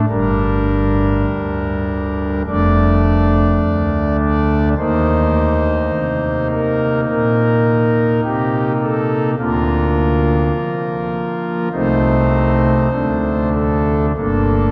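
In a rubato 4/4 at 52 BPM, this grave chorale-style classical fragment in G minor is cut from a longer piece and played by a solo pipe organ on foundation stops, spanning F1 to D5 with a thick, romantic voicing set up front. Its slow harmonies move from Gm through Dm/F, Eb5, Bb/D and Adim/C to a D5 before settling back on Gm at 14.2 seconds. A long cathedral reverb and a dark production lend the sound a heavy, solemn weight.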